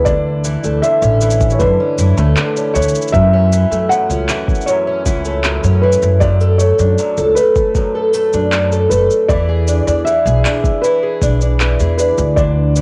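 A fingerpicked twelve-string acoustic guitar sits up front in this wistful, delicate folktronica excerpt, its octave-doubled arpeggios shimmering through a boxy body, with audible finger squeak, cassette-tape colour and tape echo. Above it, a felt-muted upright piano carries the melody in a soft, mellow, intimate voice, its thick felt tone also touched by tape echo. An upright bass, played pizzicato, is the most forward part in the mix, sounding woody and growly. From 0.1 seconds a sampler-style electronic kick drum adds a muffled, thumpy, pitched-down pulse, compressed and overdriven, as if re-recorded in a small room and run through cassette tape. Quieter electronic shaker and handclaps, also on cassette, sit in the background beneath the chord cycle of Dmaj7sus2, F#m7, Bm7 and E7. The whole piece has the feel of a home cassette recording with light studio reverb, in a straight 4/4 that runs to 12.8 seconds.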